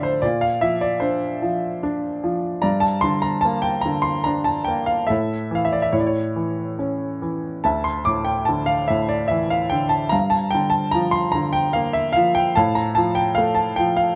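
A clear baby grand piano carries this brief, reflective passage alone, placed up front with an intimate presence and the sound of its action audible beneath the notes. The playing is lyrical and classical in spirit, moving in 3/4 at around 74 BPM with a flexible rubato feel that suits the melancholic mood. The part spans D2 to D6, and its short sustain keeps each phrase close and unadorned. The harmony drifts from Bbadd9 through Gm and a bare A5 that fills out to A, settles on Dsus2 at 7.7 seconds, then turns to Gm7 and ends on Gm9/A. A moderate small-room reverb and a dark production frame the instrument, and the 14.2-second fragment is cut from a longer piece.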